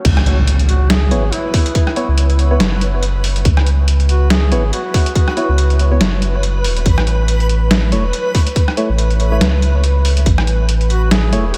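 A brooding, meditative deep dubstep excerpt in C# minor at 141 BPM, half-time with a swung feel, opens on a drop with a saturated, thick sub bass, a tight up-front electronic kick and a muffled, overdriven trip hop sampler-style kit of snare, rim click, hi-hat and crash, as a background impact sounds until 1.8 s, a soft vibrato-laden duduk with scooped folk-style notes carries the melody through dub echo from 0.7 s, a hollow, nasal organ stab with subtle chorus and echo punctuates the C#m7 to A harmony, and a reversed, granular swelling texture drifts dreamily through the mix under light reverb.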